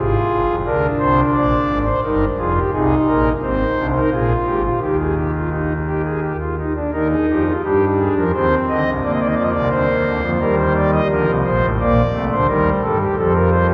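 At a stately 86 BPM in a straight 3/4, this baroque-style three-part fugue for pipe organ moves with an elegant, joyful lilt in Eb major. A single pipe organ on its foundation stops carries the whole performance, its thick, romantic voicing spanning F1 to Eb5 and sitting up front in the mix. The harmony passes from Fm/Ab and Bb7 through Eb/G and Ab, settling on Eb by 4.8 seconds before a second section begins at 6.9 seconds. That later passage touches a Cmadd9 and alternates between Bb and Eb before closing on an F chord at 13.2 seconds. A long, wet cathedral reverb lets each chord bloom through a church or concert hall, and the passage is cut from a longer piece.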